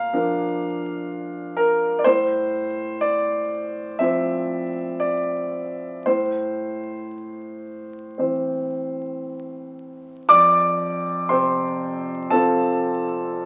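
In a rubato 4/4 pulse hovering around 55-63 BPM, this short, hopeful and peaceful fragment of a longer neoclassical minimalist piece in F major features a solo concert grand piano, open and up front with deep bass and long sustain, moving from Bb through F/A and Am to settle on F at 10.3 seconds, all heard through moderate reverb and the crackle and dulled top end of a very old 78 rpm record.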